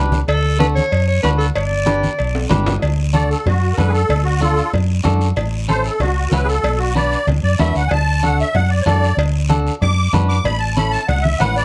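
A straight, danceable cumbia groove in 4/4 rolls along on a round, dark hollow-body bass up front, twangy clean electric guitar, soft low-tuned congas, raspy guiro and ringing cowbell and timbales, while a bright, forceful clarinet with vibrato plays a short jazz-style solo until a drum fill at 2.3 seconds, after which a reedy, shimmering musette accordion carries the joyful melody from 3.1 seconds in this close, detailed clip with little reverb, cut from a longer piece.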